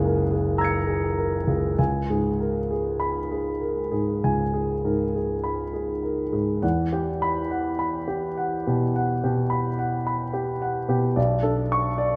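A lone grand piano opens this nocturnal, mysterious impressionist classical excerpt on a rich F#9 chord, its present, up-front tone and long sustain blooming in a moderate concert-hall reverb as it drifts in free rubato at 48-56 BPM in 4/4, passing through C#5 in C# dorian before shifting to E dorian on an Emadd9 at 6.6 s and settling on a Bm9 at 11.2 s, its voicings spanning F#1 to C#7.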